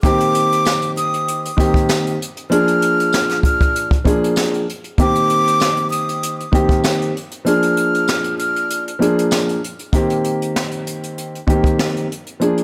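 A lightly swung boom-bap groove at 97 BPM in 4/4 sits on a jazz brush kit up front, with a boomy kick, a high-tuned snare and hi-hat played with brushes in a natural studio room. This short, gritty and reflective hip-hop cut in C minor moves between Cm7 and Bb7, carried by a dark grand piano whose mellow, boxy chords have a cassette-tape character. Over it, a breathy concert flute sings a close-miked, straight-toned melody high in its register, with a soft attack and a digital delay trailing its phrases until it stops at 8.8 seconds. A jingly, vintage-sounding tambourine adds band-limited shimmer in the background. The kick drops out from 7.5 to 9.9 seconds, and piano and brushes then carry the closing passage back to Cm7 within a small room ambience.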